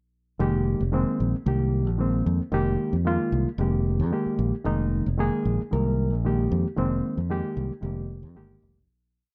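A straight 4/4 jazz groove at 113 BPM in F minor, tuned to A4 = 436 Hz, runs from 0.4 seconds on a single Fm11 chord, with a punchy, up-front fingered electric bass playing a syncopated riff between F1 and F2. Over it, a reedy, gritty overdriven electric piano, heard through a combo amp, plays syncopated drop-2 chord stabs in its mid range. The dark production sits in a moderate large-studio reverb that gives this short, nocturnal and intense piece its shadowy air before it fades out from 6.8 seconds.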